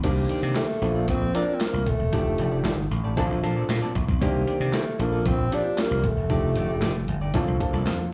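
Heard as a live gig through the venue's PA, this short cut from a longer early-eighties boogie funk piece sits in light club reverb with a digital ambience, and it feels slick and danceable in a straight 4/4. Up front, a crisp 8-bit digital drum machine with a sampler-style, thumpy kick, a medium-tuned snare, handclaps, hi-hat and crash cymbal, re-recorded in a small room, pairs with a punchy, amped vintage slap bass. A natural-sounding grand piano comps through tube saturation and slapback echo, while a clean, fingered semi-hollow electric guitar plays a riff in the background with subtle chorus and the same slapback. At 0.6 s a breathy alto saxophone takes the solo melody in a mellow jazz style, with vibrato, subtone, scooped notes and a smooth top, before dropping out at 7.1 s. Underneath, the harmony cycles through Cm9, Bbmaj9 and F13, giving the groove a polished, glossy sheen.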